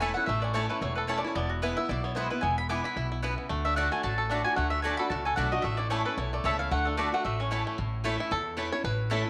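A rustic, driving bluegrass passage cut from a longer piece opens with everything sounding at once: a twangy, fingerpicked banjo and a woody, double-strung mandolin share the melody over a boxy parlour guitar and a thumpy, up-front upright bass. The tempo is a brisk 224 BPM in 4/4 with a swung eighth-note feel, set in A major and moving through A, E and D chords. A second, brighter mandolin adds stabs throughout, while the picked guitar's fresh strings carry a touch of finger squeak beneath the lead lines. The melody mandolin drops out at 7.5 seconds, and the percussive banjo then takes a short solo over the band from 7.8 seconds to the end at 9.3 seconds. The band sits in a small room with a moderate echo-chamber reverb that gives the acoustic instruments a lively, natural space.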